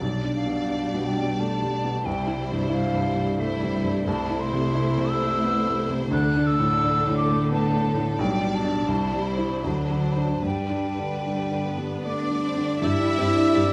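In a rubato 3/4, this lyrical, passionate classical passage, cut from a longer piece, sets a clear, intimate baby grand piano up front with audible action noise carrying the melody alongside a lush, vibrato-rich violin section, while a pure silver flute, a smooth-topped second violin section, a portamento-tinged viola section and a rich, even cello bass fill out the texture, before a dark, distant clarinet slips in at 12.1 seconds and, at 12.8 seconds, a background oboe, a very quiet mellow bassoon, a barely audible dark horn section and a double bass section join on the closing G chord, all in light reverb.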